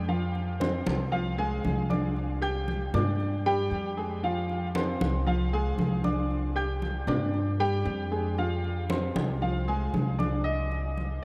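Sultry and danceable, this short excerpt of Cuban son and guajira at 116 BPM sets smooth, vintage grand piano arpeggios, coloured by subtle chorus and tape echo, over a woody, thumpy pizzicato upright bass up front and ringing, distant congas played with soft hands, all cycling through Fm and Csus2 before landing on Cm at 10.5 seconds in a dreamy mix soaked in huge ambient reverb.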